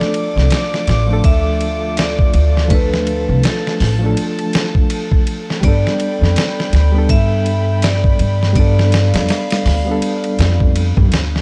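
A woody, pizzicato upright bass sits up front from 0.4 s in this dark, hypnotic trip hop excerpt, alongside a compressed, thumpy sampler-style drum kit with swung sixteenths, an overdriven reed electric piano with fast tremolo and tape echo through a combo amp, a ringing hard-mallet vibraphone melody carrying vintage 12-bit sampler grit, and a soft-attack bowed violin section holding smooth, intimate chords as the harmony moves from Dm to Gadd9 at 5.6 s.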